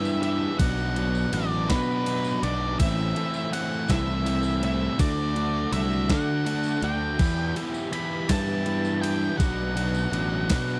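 Indie rock in 6/8 at a slow 54 BPM counted in dotted quarters, this restless, moody passage in E minor is cut from a longer piece and moves through Em, Bm, Am and D before circling back to Em and Bm. A dark, distorted octave-fuzz lead guitar carries the melody between B4 and B5, its picked notes thickened by slapback echo. Beneath it, a bright, crunchy overdriven guitar and a hollow-body semi-hollow guitar with subtle chorus, set further back, both play riffs, while a punchy fuzz bass sits up front with the overdriven kick, snare, ride and crash of a crisp 8-bit drum machine, which has a thumpy, sampler-style character and a small-room edge. Very quiet touches fill out the texture: a vintage string machine voicing violas holds soft-attack sawtooth chords with ensemble chorus and a moving notch, and a jingly, band-limited tambourine enters at 0.1 seconds. The sound is dry and close, in the manner of a 1970s studio recording with little reverb.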